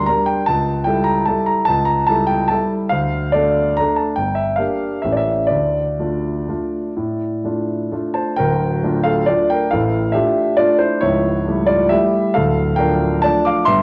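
Through the worn, warbling pitch drift of old cassette tape and a moderate recital-hall reverb, a natural, up-front grand piano plays this playful, elegant classical waltz excerpt alone in D minor, moving in a rubato 3/4 between 121 and 157 BPM across a range from the deep bass to the upper treble, with its harmony circling through A7, D minor and G minor.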